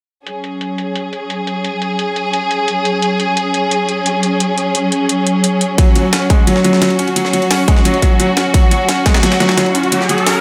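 Dark technical drum and bass at 174 BPM in 4/4 with a straight feel, this tense, futuristic excerpt opens at 0.3 s with a lush, bowed studio string section holding sustained chords up front, its vibrato tone roughened by vintage 12-bit sampler grit and pulled by sidechain pumping. An overdriven electronic hi-hat with a metallic, small-room character, low-pass filtered, ticks beneath the strings from the start. At 5.8 s a felt-muted upright piano enters with intimate, mellow arpeggios, its action noise audible and its notes trailed by digital delay and sidechain pumping. At the same moment a gritty, compressed breakbeat kit arrives with a high-tuned snare, ride and hats, all high-pass filtered, alongside a punchy, overdriven electronic kick that sits up front. An electronic riser enters at 9.3 s, carrying the passage to its cut under a light reverb.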